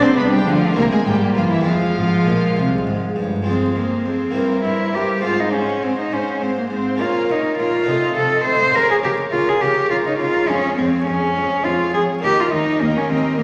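A solo cello, intimate and up front with an airy sul tasto tone and light vibrato, carries the melody from the start of this brilliant, festive baroque-style concerto movement in 6/8. It is surrounded by a very quiet, focused violin section on a high line, a second violin section with expressive vibrato, a close viola section, a round Flemish-style harpsichord on accompaniment, and a dark, soft-edged cello section on the bass, joined by a double bass section that drops out at 3.5 s. The ensemble sits in the reverberant bloom of a scoring stage beneath a faint layer of vinyl crackle, and the clip is cut from a longer piece.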